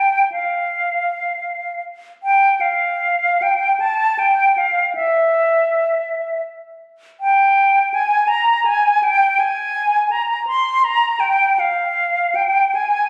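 A bright concert flute plays alone through this mournful, yearning passage of classical music, its airy, close-miked tone carrying vibrato and soft attacks as it moves expressively between E5 and C6. The free, rubato phrasing in triple metre gives the line a searching quality across the 13.1 seconds cut from a longer piece. The flute sits up front in a recital hall of moderate reverb, captured on a phone in the room with a club-like ambience.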